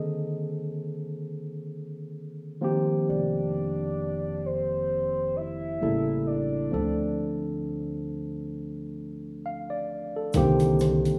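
Over a slow, lightly swung 4/4 groove, this late-night, soulful neo-soul excerpt opens with a round, dark synth lead carrying the melody through chorus, phaser and slapback echo above a barky, lightly overdriven tine electric piano moving from Cm7 to F9sus4, A7b9 and Dm7, as a woody, growly pizzicato upright bass enters at 3.1 seconds, a gritty, pitched-down boom bap kit of kick and hi-hat arrives with a quiet egg shaker at 10.3 seconds, and a boxy fingerpicked flamenco guitar sounds a single note in the background, all within a rough home-demo mix bathed in plate reverb.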